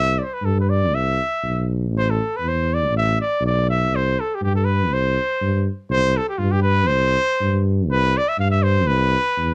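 A clear trumpet with light vibrato carries the melody in a classical style, sitting up front alongside a mellow, soft-attacked tuba that holds down the bass. This restless, fiery Balkan folk piece moves at 121 BPM in 2/4 with a gentle swing, staying in C major as a short passage repeats once over its roughly 9.5 seconds. Both horns have a smooth top end, and a light reverb gives the pair a bit of space in this cut from a longer piece.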